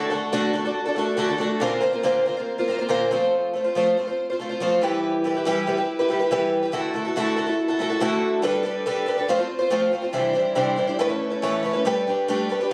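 Caught on a phone in the room and dressed with light studio reverb and compression, this jangly, hopeful rock fragment, cut from a longer piece, features a lone picked twelve-string acoustic guitar, woody, boxy and shimmering with octave-doubled old strings, sitting up front as it moves through Bbadd9, F and Em before shifting at 8.4 s into a run of Gadd9, Cadd9 and Aadd9 that carries it to the cut at 12.7 s.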